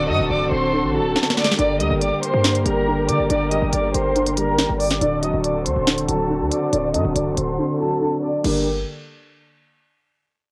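Through a lo-fi cassette haze with light reverb, this tense, ominous half-time drill excerpt sets a woody, up-front violin section's vibrato melody over a worn, boxy grand piano, distant lush symphonic strings and a punchy sine-based 808, the violins, piano and strings low-pass filtered in a sweep before a sharp-snared electronic kit crashes in at 1.2 seconds, with a silent gap at 7.6 seconds.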